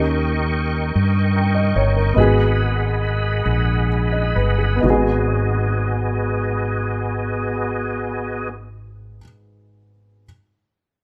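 A dark baby grand piano, a clean tonewheel organ with fast rotary speaker, key click and chorus vibrato, and a round, up-front fretless electric bass with subtle chorus enter together in this soulful, fervent slow gospel fragment in 6/8 and G# minor, moving at 41-52 BPM in dotted quarters. The tempo slows through the opening section as the harmony moves from D#7 to G#m7, the piano's intimate, short-sustained tone carrying audible action noise under plate reverb while the organ's clear chords sustain alongside it. The organ stops at 8.5 seconds and the bass at 9.2, leaving the piano to finish at 10.3 in a rough home-demo mix with a moderate room sound.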